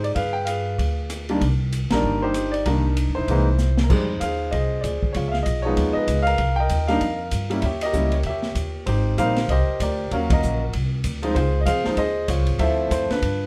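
A clear, up-front concert grand piano carries the melody over a woody, growly upright bass and a dark, smooth jazz drum kit from the opening moment of this late-night, cool jazz piano trio excerpt in C minor, swinging at 193 BPM in 4/4. The kit brings dark cymbals, a boomy kick, a medium-tuned snare, hi-hat, ride, crash and rim clicks, and a short drum fill at 3.6 seconds leads into a longer second section. The chords move through altered dominants and rich minor and major sevenths, with band accents at 1.9 and 10.3 seconds, all set in light reverb.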